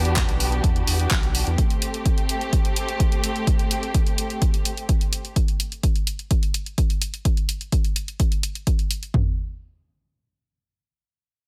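Progressive house at 127 BPM in a straight 4/4, bittersweet and driving, this fragment cut from a longer piece opens on Em7 moving to Am7 as a dark, woody string section holds lush bowed chords with vibrato from a distant place in the mix, pumping under sidechain until 5.3 s. A round analog bass, deep and mellow with a sawtooth-and-sine tone touched by ring modulation, pumps beneath it only through 1.6 s. A layered electronic deep house kit carries on alone to about 9.3 s, its punchy kick and toms sitting up front with handclaps and hi-hat, all in a dry, close sound.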